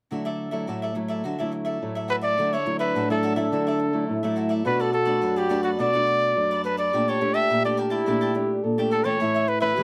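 Close, detailed microphones and a light reverb frame this sunny, lively samba fragment, where a crisp, picked cavaquinho and an up-front, dark, fingerpicked nylon-string guitar set the accompaniment from the start. At 2.1 seconds a warm trumpet takes the jazz-style solo melody up front with a light vibrato, joined at 2.4 seconds by a breathy, whispered trombone second line with a soft attack and vintage tape echo. The harmony moves from Dadd9 through Bm7 and Gmadd9/Bb before landing on A.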